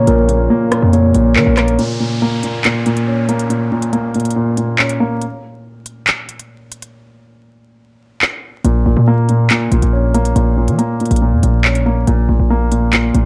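Dark, menacing half-time drill hip hop cut from a longer piece, where a mellow, deep-bassed grand piano and a punchy sine 808 bass sit up front with crisp-hatted electronic drums, a clean tine electric piano plays filtered, delayed arpeggios over a faint detuned sawtooth pad for the first 1.8 seconds, and a downlifter sweeps through the first part of a break that runs to 8.6 seconds before the piano and 808 return over light reverb and vinyl crackle.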